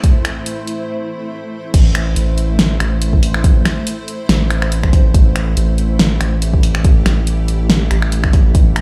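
Cavernous and meditative, this deep dubstep passage opens with a blurred, evolving granular cloud pad holding sustained chords beneath an up-front, tape-warm drum kit of fat snare, hi-hat, finger snaps and crash cymbal, all driven by a deep electronic kick in a swung half-time feel. After a short build-up and break, the drop lands at 1.7 seconds, where a thick, saturated sine sub bass enters with a fast attack and holds a low A. The whole mix sounds as if it is played on a big sound system in a bare room, bathed in stone room reverb.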